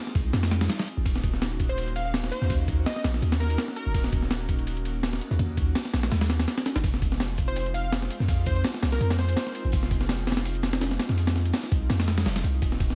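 An airy, breathy pad opens this raw, atmospheric drum and bass excerpt in F phrygian at 166 BPM, quickly joined by a gritty, thumpy sampler-style breakbeat kit up front and a deep, mellow 808-style bass, while a plucky, detuned unison lead with dub echo and cassette tape colour arrives at 1.7 seconds and returns at 7.5 seconds, a very quiet, dark second breakbeat kit of hi-hat and snare slips in at 6.8 seconds, and vinyl crackle sits over the dry mix as the chords move between Fm7 and Ebm7.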